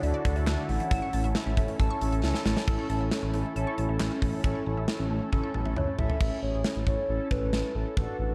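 A dark, warm-sounding production with light reverb frames this bright, upbeat synth-pop excerpt in A major at 136 BPM, where a gated 80s drum kit with a tight kick and bright cymbals drives beneath a smooth, up-front synth bass, mellow brassy synth chords, a swirling phased pad, squelchy resonant blip-pluck arpeggios in the background, and a hollow, woody clarinet-like lead with vibrato that returns at 5.8 seconds during a drum fill.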